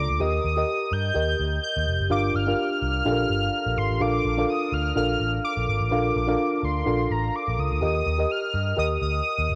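1980s-style pop with a romantic, nostalgic glow and a gentle swing, where a bright, sawtooth octave-doubled lead with vibrato carries the high melody through chorus, shimmer reverb and analog delay over a mellow FM electric piano that sounds soft and warm with cassette-tape colour, chorus and shimmer, while a dark, foam-muted picked electric bass sits punchy and up front as the chords move from Eb through Gm7 and Bbmaj7 in a lush hall on a homespun cassette recording.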